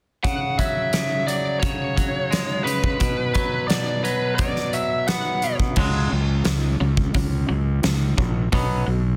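Quiet-loud alternative rock with a brooding, cathartic mood, cut from a longer piece, where a dark, overdriven lead guitar with analog delay carries the melody over twangy, clean, compressed electric guitar arpeggios and a huge arena drum kit with a fat snare and punchy kick. The lead drops out at 5.6 seconds, and at 5.8 seconds a growly fuzz fingered bass enters, its overdriven, direct-and-amped tone pushing up front as the chords move between C#sus4 and B5. Light reverb and small room ambience sit beneath a dense, heavily limited modern master.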